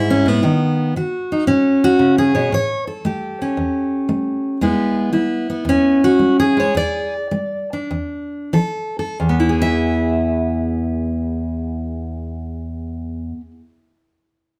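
This acoustic country blues in E mixolydian has a swaggering, laid-back mood and a swung 4/4 feel, with a tempo between 88 and 116 BPM that slows down from 4.6 to 9.2 seconds. A single fingerpicked steel-string jumbo acoustic guitar plays solo, sitting up front from 0.0 to 13.7 seconds and spanning E2 to E5. Its fresh strings give a bright, full-bodied tone. The harmony moves through B, A7 and E7, then touches F before settling on E as a new passage begins at 9.2 seconds. Tuned slightly under standard pitch and played live in a large studio room with moderate reverb, it is cut from a longer piece.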